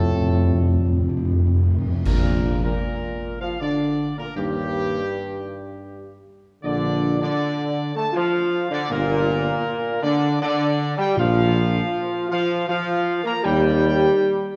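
A dark, resonant concert hall wraps this regal, solemn brass fanfare in B-flat major, a slow 3/4 at 79 BPM cut from a longer piece. From the first moment, the clear, vintage trumpet section carries the melody over sustained chords from a distant French horn section and a gently vibrato-tinged trombone section, with a roomy tuba anchoring the bass. Hard-mallet timpani, close and up front, play an opening fill beneath them before the full band strikes an accent at 2.1 seconds with dark clash cymbals and concert bass drum, and the timpani return at 11.2 seconds.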